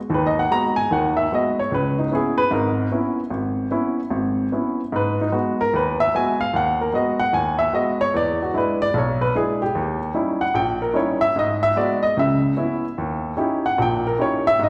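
An upright piano opens this smoky, swinging solo jazz excerpt, playing on its own from 0.1 to 14.7 seconds at 149 BPM in 4/4 with a lilting swing on the eighth notes. In G# minor, it moves through G#m7, C#m7, E7 and D#7b9, spanning G#1 to A#5. The woody, intimate piano sits up front with short sustain and audible action noise, wrapped in the lush reverb of a recital hall.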